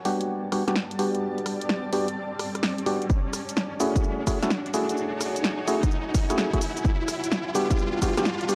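A blurred, evolving granular cloud pad opens this moody, bouncy UK garage excerpt, its detuned sine and sawtooth layers sustaining brightly with built-in reverb and a pumping sidechain feel. Within moments, a hollow, organ-like stab joins with fast-attack, decaying hits, coloured by chorus and tape echo and shaped by a filter sweep as the passage builds. A punchy analog drum machine sits up front with dry, swung two-step hi-hats, rim clicks, shaker and snare at 128 BPM, while an electronic riser sounds underneath. A layered electronic kick drum arrives at 3.1 seconds to add weight, as the harmony shifts from Gmaj7 to F#m9 before returning to Gmaj7 at 6.8 seconds. The gritty hardware recording keeps the room light and close, so the whole build-up feels tense and primed for a drop.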